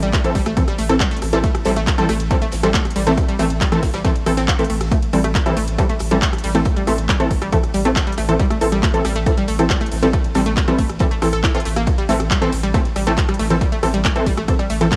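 Industrial and driving, this 138 BPM peak-time techno cut in A minor rides a single Am chord, with a punchy up-front electronic kick, a thick saturated sub bass and a techno kit of handclaps, rim clicks, smooth hats and ride pumping under sidechain, a faint dark acoustic kit with hi-hat and snare, a bright detuned analog pluck riff from G3 to A4 through chorus and tape echo, and aggressive ring-modulated rave stabs from E3 to A4 sitting up front with analog delay, all heard on a lightly reverberant cassette home recording.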